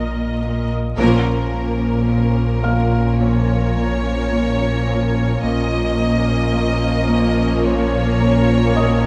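Bathed in wet scoring-stage reverb under a vinyl crackle, this mysterious, tense suspense film cue sets a clear, distant, intense violin section melody over a rich, smooth viola section, a ringing, thumb-plucked Celtic harp riff in the background, an expressive, very quiet cello section and a deep, sustained sub bass drone with octave, while a mellow, felt-muted upright piano with audible action noise adds intimate texture up high, and at 1.0 s a focused second violin line and a woody double bass section enter in the background on an ensemble accent that lasts until 2.1 s.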